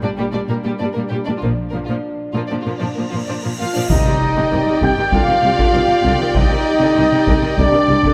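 Drenched in the reverb of a scoring stage, this epic, heroic orchestral film-score excerpt in C minor at 98 BPM builds from lush bowed violins carrying the melody and a second line, expressive violas, dark cello bass and sustained French horn chords, with distant double basses added from 1.4 s. A huge, bright cymbal swell rises from 2.8 s, and a pure, very quiet flute and mellow trumpet stabs enter around 3.6 s, before an impact at 3.9 s brings in close, heavy taiko drums, round timpani and a background tuba.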